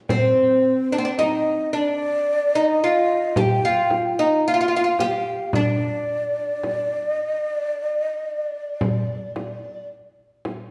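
A straight 10/8 pulse counted in eighths at 110 BPM carries this passionate, stately fragment of an Arabic maqam ensemble piece in D maqam kurd, tuned to A4 = 438 Hz. Up front, a fretless oud leads the melody between C4 and G4, its plectrum-plucked double strings sounding woody and bright. Above it, a close-miked, end-blown ney of reed cane plays a second line from C5 to A5, breathy and mellow, with tongued notes and expressive vibrato. A small frame drum played with soft hands keeps the percussion close and dry. The oud and ney both sound from 0.1 to 9.9 seconds, while the drum continues on until 10.7 seconds, all set in the lingering 1.4-second reverb of a recital hall.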